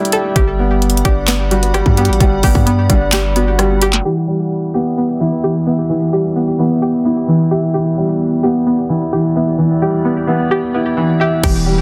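Eerie and brooding, this half-time trap excerpt sets a dark, mellow baby grand piano up front against a glassy, ethereal FM pad in the background and a twangy, string-like resonator pluck playing chorused, delayed arpeggios, while a trap kit with a hard-clipped kick, sharp snare and bright hats and a punchy, heavy 808-style bass drive the opening until 4.0 seconds, drop out through a long filter sweep, and return briefly at 11.4 seconds in a dense, heavily limited mix.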